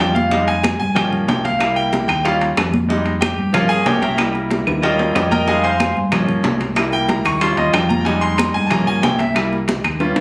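A bright, brilliant concert grand piano opens this fiery, danceable salsa excerpt up front, soloing throughout over a cycling Fm7, Gm7b5, C7, Eb7 progression, with a dark, amped electric bass and thick-skinned, high-tuned congas underneath from the start. Round, saturated bongos struck with hard hands join in, while ringing metal-shell timbales and woody claves sit in the background, and drum fills arrive at 4.7 and 9.7 seconds. Captured on a phone in the room, the sound carries club reverb and compression, giving the groove a live, nightclub feel.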